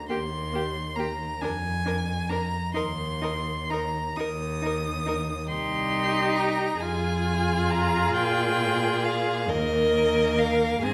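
A first violin is heard first, at 0.0 s, with a clear, smooth and even melody sung high with vibrato. It sits close and up front in this tender, lyrical passage, cut from a longer romantic slow movement for string quartet. At 0.1 s a second violin, viola and cello join, each bowed with a rich tone, vibrato and expressive portamento. The second violin and viola sound more distant, carrying an inner line and accompaniment, while the cello holds the bass up front with a soft attack. The 6/8 moves with flexible rubato through harmonies from Eb5 and Bb7/F to Cm and Fm before settling back on Eb5 at 9.5 s. A reverberant recital hall surrounds the four single players with a lingering ambience.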